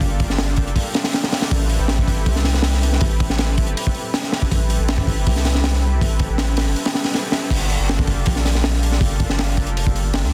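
Dark and atmospheric, this drum and bass excerpt cut from a longer jungle piece moves at 160 BPM in a straight 4/4, sitting slightly below standard pitch. A crunchy breakbeat kit drives it from start to finish, its punchy kick, high-tuned snare, hi-hat and crash cymbal sounding saturated and gritty with a rolled-off top, placed up front. Beneath it, a deep, thick sine sub bass with a fast attack holds sustained notes between F1 and D2, its saturation giving weight as loud as the drums. A lush, detuned sawtooth pad in unison floats further back, nasal yet bright, with a soft attack, long release, chorus and a vintage 12-bit sampler grit as it sustains chords from Gm9 to Am9. The whole passage plays as a drop, returning to Gm9 at 7.5 seconds, and the mix is dense, heavily limited and nearly dry.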